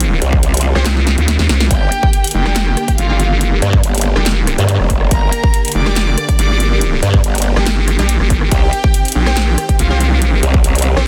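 Heavy wobble dubstep in G minor at 141 BPM with a half-time feel, aggressive and menacing, cut from a longer piece. A growling, saturated bass and a nasal, resonant vowel-sweep wobble bass sit up front over a punchy electronic kick and a layered dance kit with metallic hats, handclaps and rim clicks, while huge detuned supersaw chords with phaser and sidechain pumping fill the background alongside bright orchestra-hit-like stabs with dub echo. A warm bowed violin section with vibrato carries the melody from 1.7 seconds, entering just after a drum fill where the kick drops out, over a dense, heavily limited master with little reverb.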